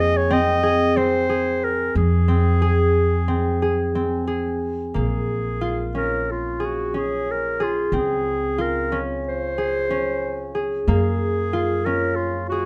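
Close, detailed microphones and light reverb frame this restless, urgent fragment of contemporary chamber music in 9/8 at 182 BPM (eighths), in Bb minor tuned to A4 = 437 Hz, where a warm, classical-style clarinet carries the solo melody up front, a ringing concert harp plays fingerpicked arpeggios, and a woody, thumpy pizzicato upright bass with steel strings anchors the low end, all playing together throughout as the harmony shifts from Fm to Bbm7 at 5.0 seconds and on through Dbmaj7 to Gbmaj7.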